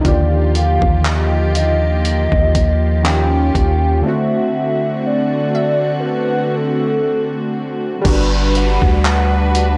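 This gritty, dry hardware recording carries a digital ambience, framing a short, smooth and dreamy slice of contemporary R&B with a gentle sixteenth-note swing. Up front sit a dusty sampler-style drum kit, re-recorded in a large room with a thumpy kick, handclaps, hi-hat and crash, and a deep, mellow 808-style bass whose long sine notes decay underneath. Round, detuned analog keys with chorus and a filter sweep fill in the harmony, while a dark studio string section bowed sul tasto floats beneath with sidechain pumping. Above them a hollow, woody clarinet-like synth lead with vibrato, chorus and tape echo carries the melody, and a very quiet, crystalline wavetable pluck adds a faint glassy sparkle high in the register. The chords move from Ebmaj9 through Eb9 to D7 with a break from 4.0 to 8.0 seconds, then settle on Gmaj7 as an electronic downlifter enters at 8.1 seconds.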